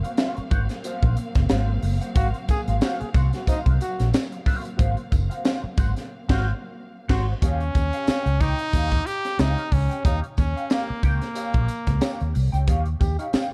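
A strutting, playful funk groove at 91 BPM opens on an Ab13 chord, with a crisp, punchy fusion drum kit, a bright hollow-body electric guitar colored by wah and chorus, and lush bowed strings holding sustained chords until 7.4 s, while a round, foam-muted fingered bass joins up front at 0.4 s under a lightly swung sixteenth feel. A clear trombone with vibrato enters as a second line at 2.2 s, followed at 2.5 s by a very quiet, jingly tambourine, and after a band accent the harmony shifts to Eb9 as a close-miked, brilliant trumpet takes the melody. The dry, dark production keeps this cut from a longer piece tight.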